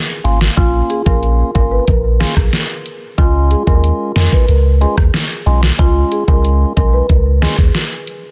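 A barely audible electronic impact opens this short, hypnotic dancehall excerpt as the drums, sub bass and organ all come in at 0.2 seconds. The pop drum kit sits up front with a knocking kick, deep snare, rim clicks and hi-hat, its electronic, layered sound overdriven and re-recorded in a small room for a tough edge. Beneath it, a punchy sine sub bass with a pitch-drop attack holds sustained, up-front low notes, while a soft, flute-like tonewheel organ adds a clean, percussive accompaniment with key click in the background. At 0.6 seconds a woody rosewood marimba enters with the melody, its vintage, band-limited tone trailed by tape echo. The harmony moves from Bbm to Db, and the dry, dense, heavily limited modern master keeps the groove straight and close.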